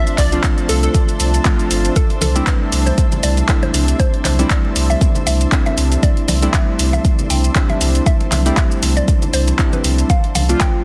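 A dense, heavily limited mix with light reverb carries this soulful, relaxed deep house excerpt in C major at 118 BPM, where a deep, up-front electronic kick and round sine sub bass anchor tape-warm drum machine handclaps, hi-hat and shaker, pulsing chorused analog keys stab over a cloudy, evolving granular pad, a punchy detuned unison lead flashes only until 0.9 s, and from 2.0 s a woody, phased mallet-like pluck, joined a moment later by thick-skinned congas, sits in the background over chords moving from F6/C to C69 and finally F6.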